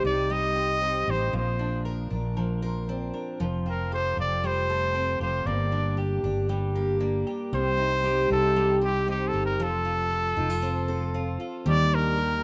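A light reverb colours this sunny, easy-going acoustic pop excerpt, with a punchy solo trumpet carrying the melody up front over a bright, full-bodied picked steel-string acoustic guitar and a round, amped fretless electric bass. Behind them, a clean, twangy twelve-string electric guitar with a vibrato effect plays arpeggios in the background. The straight 4/4 feel moves through a progression from Cm and Bbadd9 to Fadd9 and Gm, landing on Ebmaj7 at 11.7 seconds.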